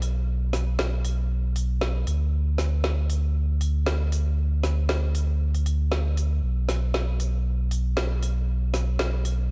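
A gently swung 16th-note groove in 4/4 drives this short, smooth deep house fragment, cut from a longer piece, with an electronic, layered drum kit whose woody snare and silky hi-hats sit back in the mix inside a studio reverb. Carrying the whole nine and a half seconds up front is a deep, full sine sub bass doubled at the octave, with a fast attack and long sustained notes. The production is dark and warm overall, with a warm, smooth mood.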